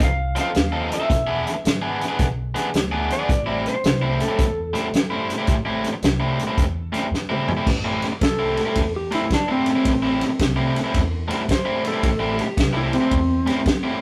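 Recorded roughly in a rehearsal room with a faint mains hum and moderate reverb, this smoky, brooding electric blues shuffle in A minor swings at 110 BPM, moving through F7 and E7 to Am7. A dark, clean lap steel guitar carries the melody with fingered slide and volume swells over a bright, overdriven stack guitar riff and a woody, growly pizzicato upright bass. An up-front vintage drum kit with a fat snare, punchy kick and rolled-off top plays a fill from 7.1 to 7.7 seconds, where a slide guitar solo begins and runs until the excerpt's end at 14.0 seconds.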